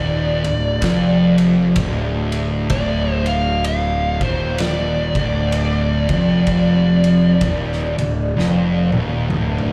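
Heard as a live club gig through the venue's PA, steeped in club reverb, this hypnotic, heavy stoner and doom metal excerpt crawls at 64 BPM with a swung feel in D phrygian over a D minor chord. A double-tracked, up-front thick fuzz guitar grinds out the low riff beside a picked, overdriven fuzz bass, while a dark, compressed fuzz lead guitar carries the melody with slapback and tape echo until 9.3 seconds. An oversized, low-tuned acoustic drum kit with a punchy kick, fat snare, dusky cymbals and toms comes in at 0.4 seconds and rolls into a fill at 8.4 seconds.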